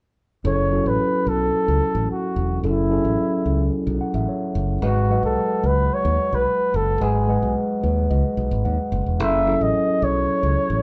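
A breathy, whispered flugelhorn carries the melody from 0.5 s in this glamorous, sultry disco passage at 110 BPM in F# dorian, its soft attack, light vibrato and smooth top giving it an intimate, pop-style feel. Beneath it, a mellow tine electric piano with tube saturation supplies the chords, moving from F#m7 to G#m7 and back, and adds fills at 3.7 s and 7.6 s. A bright, growly fingered electric bass sits punchy and up front, and the band plays live in one room with light reverb in this cut from a longer piece.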